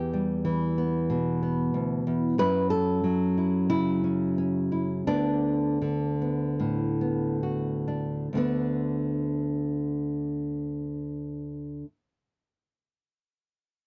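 A dry, close recording with a 1970s studio feel, cut from a longer folk piece for solo fingerstyle nylon-string guitar. The guitar sits up front with a full-bodied, classical tone, fingerpicked in straight 4/4 with a gentle, nostalgic mood, its tempo moving between 65 and 94 BPM and slowing from 2.4 to 8.3 seconds. The chords pass from Em through F#m7 and D6 before a new section opens at 8.3 seconds on Bm/D, with the guitar tuned slightly below standard pitch.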